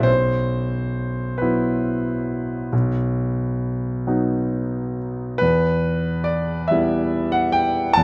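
In a rubato 12/8 at 44-48 BPM, counted in dotted quarters, this mournful, melancholic romantic nocturne for solo concert grand piano in E minor, taken from a longer piece, moves from Bsus4 to B and settles on Em at 5.4 seconds, the up-front piano sounding clear and natural across its B1 to A5 range, with a deep bass, long sustain and light reverb.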